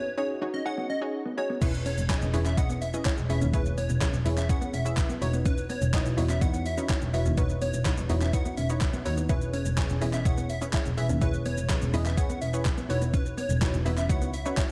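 Driving, energetic dance-pop at 125 BPM, this excerpt opens with a bright, punchy plucky unison lead, a round, warbling analog pluck with chorus and a mellow, clean electric guitar riff in the background, before a dark, bowed double bass and a thumpy, overdriven 80s digital drum machine with gated reverb snare, handclaps and shaker come in up front at 1.6 seconds, with the lead and pluck pumping against the beat over chords moving between E6 and C#m11/E.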